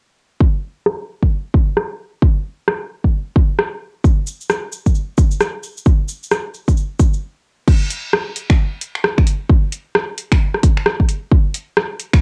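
A home cassette recording with light reverb carries this moody, late-night UK garage excerpt at 132 BPM with swung 16ths: a punchy, up-front electronic kick enters at 0.4 s; a layered garage kit of metallic hats, rim clicks, finger snaps and crash, its snare and cymbals softened by low-pass filtering, joins under a filter sweep on the drums; a grainy, bright cabasa adds texture from 4.0 s; and a brief stop at 7.2 s sets up the next section.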